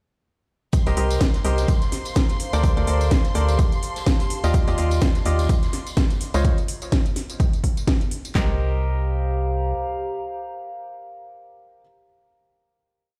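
A punchy, overdriven analog drum machine drives a four-on-the-floor kick with snare and handclaps at 126 BPM in this soulful, bittersweet piano house piece in C dorian, layered with a house kit's metallic hats, cracking snare and tambourine, a very quiet, dark looped breakbeat from a big rock kit and a distant tambourine, while an up-front, hollow organ-like FM bass, a clear baby grand piano playing a rhythmic chord riff with tape echo, a biting violin section holding a high note and a warbling, nostalgic lo-fi pad entering at 1.8 seconds all pump against the kick over Cm7, Bbmaj9/D, Ebmaj9 and Dbmaj7, and the pad and piano then sustain through the final Cm7 from 8.4 to 12.0 seconds in a stone-room reverb.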